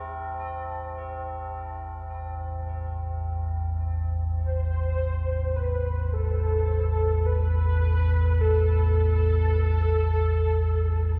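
Heavy cathedral reverb with a long 6.2-second tail hangs over a small-room ambience, giving this brief excerpt of a dark ambient drone an unsettling, cavernous feel. Up front, a deep, ominous rumbling drone built from detuned, wave-folded triangle and sawtooth tones fades in slowly, its sustained body carrying its own reverb and a subtle chorus. Behind it, solemn tubular bells struck with a plastic hammer ring out metallic arpeggios through a diffuse ambient delay, fading out as the passage goes on. A quartz singing bowl, close-miked and dry, adds a pure, meditative shimmer with slow beating that stays barely audible. At 4.4 seconds a mellow, horn-like synth lead enters with a round, vintage, warbling melody, its detuned sawtooth tone shaped by a filter sweep, vibrato, ensemble chorus and ambient delay.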